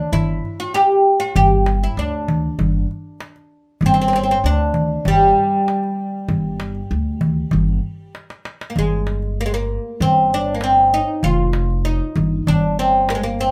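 This festive, passionate Arabic maqam ensemble piece is a short cut from a longer performance, played live together in one studio room with a moderate ambience. A deep, woody oud carries the melody up front, its plucked double strings ringing with a fretless, plectrum-struck tone. Beneath it, a pizzicato upright bass with steel strings adds a thumpy, warm low end, also placed close in the mix. A small metal-shelled darbuka sits high, crisp, close and dry, driving the straight, steady pulse and breaking into a fill from 8.2 s to 8.8 s. At 8.8 s the music moves into a new section and shifts from maqam rast to maqam kurd on G.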